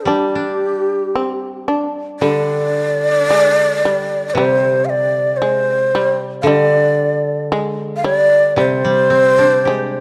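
At a slow 56 BPM in 2/4, the pulse stretches and breathes in a free rubato, giving this short cut from a longer Japanese chamber piece an austere, calm mood. A breathy shakuhachi carries the melody up front, its end-blown bamboo tone tongued and expressive, with vibrato shading its long notes between G4 and F5. Beneath it, a bright, buzzing shamisen plays a second line from G3 to D4, its plectrum-plucked, fretless attack percussive yet set lower in the balance. The koto, entering at 0.1 seconds, supplies accompaniment from C3 to G4 with a dry, woody fingerpicked sound. A moderate scoring-stage reverb and a dark production surround the trio, and a brief opening passage gives way to a new section at 2.2 seconds that carries on to the close.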